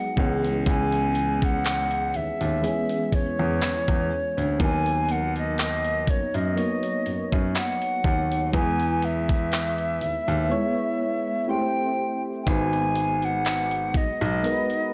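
A dry, gritty recording with cassette-tape and transformer saturation frames this moody, sensual contemporary R&B excerpt at a slow 61 BPM with a lightly swung 16th feel, moving from C#m7 through Bmaj7/D#, E, Am7 and G#m7. An airy silver concert flute carries the melody up front with vibrato and tongued notes, over soft, round electric-piano-like synth keys shimmering with chorus and phaser, while an intimate grand piano with audible action noise plays the bass line. A dusty, compressed sampler-style kit of handclaps, hi-hat and a thumpy kick sits up front, dropping out from 10.5 to 12.5 seconds before returning.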